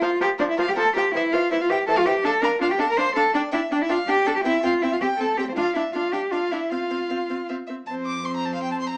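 Graceful and cheerful, this rubato classical-period string quartet movement in 3/4, cut from a longer piece, sets a clear first violin melody in the background above a rich second violin line, viola accompaniment and a close, up-front cello bass, each part a single bowed player with focused vibrato tone, under light reverb and a small-speaker sound, moving into a new section at 7.9 seconds.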